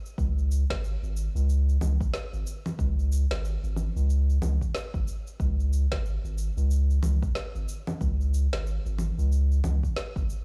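Organic downtempo with a mystical, swung feel, this short cut from a longer piece sets a round, dark analog bass up front with transformer saturation and sidechain pumping over a deep, tape-warm electronic kick and a softer layer of electronic shaker, woody snare and congas re-recorded in a small room, all captured in a dry, gritty recording.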